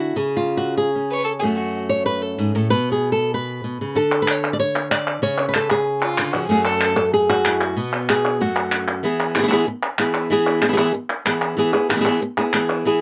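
Fiery and dramatic, this short flamenco excerpt in a straight 4/4 sets a bright, fingerpicked guitar with fresh strings and audible finger squeak up front carrying the melody throughout, while a single reedy, gut-string violin with light vibrato and an airy bow adds a brief second line at 1.1 and 6.0 seconds, and crisp, vintage-toned palmas hand claps join at 4.1 seconds, all captured dry and close with detailed clarity as the harmony moves among F#m and C# before settling on E.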